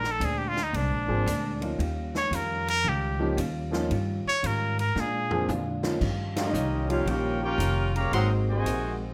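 In light reverb, this joyful big band swing excerpt opens with a nasal, straight-muted trumpet soloing up front over woody pizzicato upright bass, a dark, clean hollow-body jazz guitar and a big-room drum kit with a punchy kick, a warm grand piano joins at 1.1 s, and a drum fill leads to a band accent at 6.3 s, after which a clear trumpet section with vibrato carries the melody over a distant trombone section's second line and brief mellow trombone chords.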